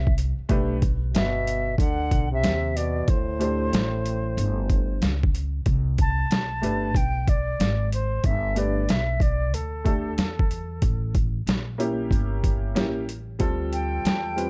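Jazz-hop with a relaxed feel, cut from a longer piece. A gritty, overdriven sampler-style drum kit with a thumpy kick sits up front beside a growly pizzicato upright bass and a slightly detuned, vintage upright piano that enters at 0.5 s. An airy, distant concert flute with vibrato carries the melody over a clear, soft-attacked trombone second line that drops out at 5.0 s, and from 5.7 s the flute takes a solo, all set in a small room with a swung groove and a dark, warm production.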